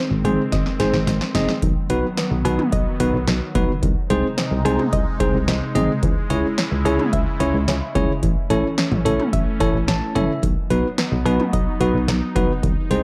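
Dark, warm production with light digital ambience frames this driving, nocturnal synth-pop excerpt, cut from a longer piece. Up front, an electro analog drum machine lays down a deep kick, punchy snare, metallic hats, cowbell and toms, with a fill from 0.5 to 1.6 seconds, and it carries a tape-warm, small-room character. Beneath it, a solid FM bass offers round, fast-attack notes that decay mellowly. A bell-like tine electric piano, bright and direct, plays accompaniment close to the listener and adds a brief fill at 9.6 seconds. A swirling, detuned sawtooth pad holds slow-blooming chords through phaser and chorus, while in the background a soft, nasal filter pluck ripples through arpeggios with chorus and tape echo. The harmony moves through G#, B, G#/B#, C#m, A and back to B.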